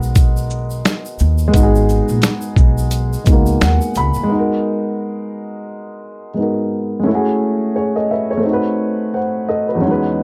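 A dark upright piano anchors this melancholic, hazy lo-fi hip hop excerpt as accompaniment, its mellow, intimate tone carrying audible action noise, long sustain and a cassette-tape softness across the full 10.2 seconds. Beneath it, a woody pizzicato upright bass sits up front with tube saturation, and a dusty soul sampler-style drum kit brings a thumpy kick, medium-tuned snare, hi-hat, shaker and finger snaps, all coated in vintage 12-bit grit over a swung 4/4 feel. A grainy egg shaker sits distant, as if heard across a large room. The piano plays a fill from 3.3 to 4.3 seconds. The drums drop out at 4.1 seconds, and at 4.3 seconds the bass and shaker stop, leaving the piano alone as the harmony moves from G#m7 to F#m9 and B7b9. The sound is a dry, gritty hardware recording with light reverb.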